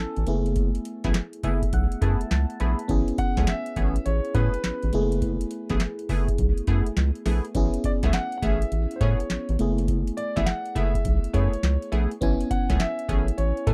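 Upbeat and flirty, this swung new jack swing R&B excerpt alternates F#m11 and Amaj9 chords as an intimate grand piano carries the melody through tape echo over a glassy FM electric piano with chorus and phaser, which plays a fill from 1.1 to 2.9 seconds, while a round analog bass sits up front, a booming analog drum machine of deep kick, tonal snare, metallic hi-hat and handclaps enters at 0.2 seconds, and punchy polysynth stabs with chorus join at 1.0 seconds, all in a dry, close 1970s-style studio sound.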